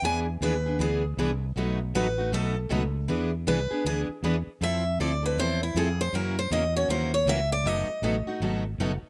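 Acoustic string swing in the jazz manouche style, virtuosic and brisk at 158 BPM with a swung eighth-note feel, in which a bright, fresh-stringed lead guitar with audible finger squeak and a slapback echo plays an up-front solo over two picked accompanying guitars (one also echoed, the other full-bodied and jumbo) and a dark, round, directly amped fretless electric bass, the chords moving from E7 through Fmaj7 and F#7 to B7/F#, all captured dry outdoors in this short section cut from a longer piece.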